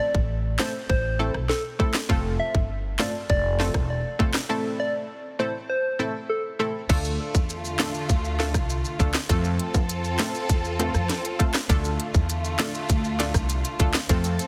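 A growly, woody upright bass and a tight, up-front island pop drum kit of crisp hats, sharp snare, rim clicks, handclaps and crash drive this bouncy, tough dancehall cut at 100 BPM, with punchy detuned sawtooth chord stabs and a round, gentle FM lead with chorus and delay carrying the melody until 6.7 seconds, after which lush bowed strings with sidechain pumping and bright, dry maracas and timbales enter at 6.9 seconds over Am, F and Dm chords, all under a heavily compressed radio sound with light reverb.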